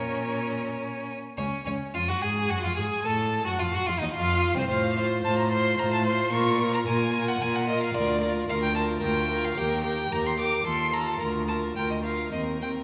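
A lively, spirited classical-period string quartet excerpt in a rubato triple metre, where a clear, close first violin sings the melody with vibrato, a rich second violin weaves an expressive second line with soft attacks and portamento, a dark, woody viola fills in the accompaniment, and a focused, up-front cello anchors the bass, all bathed in a wet concert hall reverb.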